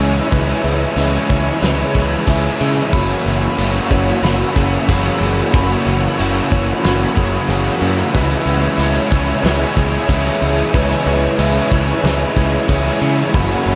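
Opening at once on a shimmering, ethereal pad, twangy chorused arpeggios from a clean direct-recorded guitar, a double-tracked crunchy guitar riff, two more overdriven guitar riffs (one with subtle chorus, one with reverse reverb), a growly, punchy electric bass up front and a loose indie drum kit with a fat snare and dark cymbals, this blissful, hazy shoegaze and dream pop fragment at 92 BPM moves from C#m7 to F#7sus4 and back, with a jingly tambourine joining at 1.0 s and the whole mix soaked in huge, dreamy reverb.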